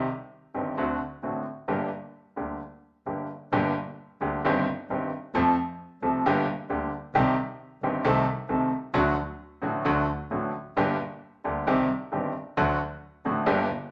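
A bright, woody upright piano up front and a bowed double bass in the background open this sultry, dramatic tango fragment, cut from a longer piece and moving with a loose, rubato feel. The polished, present piano carries the accompaniment with short sustain and audible action noise, while the single bass player adds soft-attacked, expressive lines with vibrato and portamento. A brief opening passage gives way at 3.5 seconds to a longer second section, all set in the moderate reverb of a large studio.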